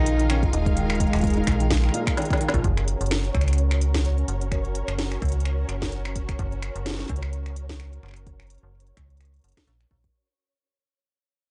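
A dry, gritty hardware recording with cassette-tape and transformer saturation and a dulled top end carries this wistful, glitchy IDM excerpt in F# major at 128 BPM, lightly swung on the 16ths. A floating, bowed cello melody with delay and felt-muted upright piano arpeggios, intimate with audible action noise and sampler grit, sit over a silky, chorused string machine, an up-front metallic FM bass and a flickering, granular texture in the background. An organic electronic kit of finger snaps, crisp hats and an overdriven woody snare enters at 0.1 s and is joined by a deep kick at 0.4 s, and after the cello drops out at 2.1 s, a drum fill at 2.2 s leads into a fade-out from 2.6 s as the harmony moves from D#sus2 to F#.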